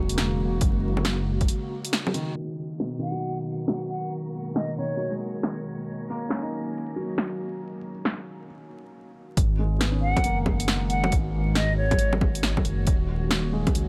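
Future garage with a nocturnal, melancholic mood and a swung shuffle, built on a soft, felt-muted upright piano with audible action noise and a filter sweep through its middle stretch, under a warbling, nostalgic tape-like pad and a faint, breathy wind-like noise texture in the background. A deep house kit of woody snare, dark hats and bongos sits up front throughout, while a punchy electronic kick and a rumbling, detuned saw bass drop out at 1.5 s and return at 9.4 s. A pure, hollow concert flute with vibrato and tape echo carries the melody twice, first entering at 3.0 s, all wrapped in vinyl crackle and light digital ambience.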